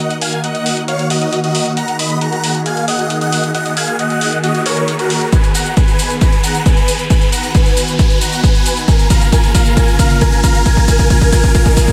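A big supersaw lead carries the melody from the opening second, its detuned unison sawtooth sound huge, bright and euphoric, with a fast attack, sustained notes, compression, a phaser and sidechain pumping. This is a driving, soaring stretch of uplifting trance at 135 BPM in 4/4, in Eb minor, cut from a longer piece and built entirely as a build-up. Beneath the lead, an analog string pad holds sustained chords with a silky, string-like tone, a slow attack, vibrato, ensemble chorus and its own sidechain pumping, while an electronic hi-hat and shaker add metallic hats. A background riser enters at 2.4 seconds, and at 5.3 seconds a punchy, up-front electronic kick drum arrives with a drum fill as the harmony moves from Ebm to Abm and then Bbm. A swell lands in the final moments, and a light reverb gives the mix a touch of space.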